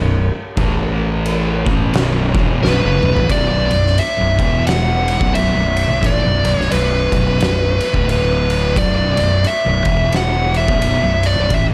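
Two thick fuzz guitars, one pushed into the background and the other very quiet, open this sludgy, ominous stoner and doom metal excerpt in B minor at 88 BPM with a swung 4/4 riff over a growly, overdriven fingered bass, before an oversized low-tuned drum kit with a fat snare and boomy kick crashes in up front at 0.6 seconds, and as a drum fill rolls in at 2.6 seconds a compressed fuzz lead guitar with distortion and analog delay takes up the melody while the chords move among Bm, E5 and D5 in a light reverb.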